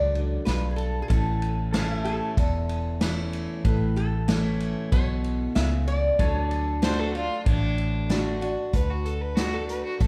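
This honky-tonk and classic country piece in D major moves at an unhurried 94 BPM in a straight 4/4, with a heartfelt, nostalgic mood, cut from a longer piece. A lap resonator guitar carries the melody with a metallic, nasal slide tone played with fingerpicks, while a pedal steel guitar holds clean, compressed sustained chords. Underneath, a bright dreadnought acoustic guitar is picked with fresh strings and the odd finger squeak, and a dark, woody upright piano sits in the background, its action noise audible. A foam-muted vintage electric bass is round, punchy and up front, and a distant, roomy drum kit played with bundle sticks adds dark cymbals and a punchy kick from 0.2 s. A clear, focused fiddle with light vibrato enters at 6.8 s as a second line, and the harmony moves from D to A and back to D at 6.2 s, all set in a moderate large studio reverb heard from further back in the room.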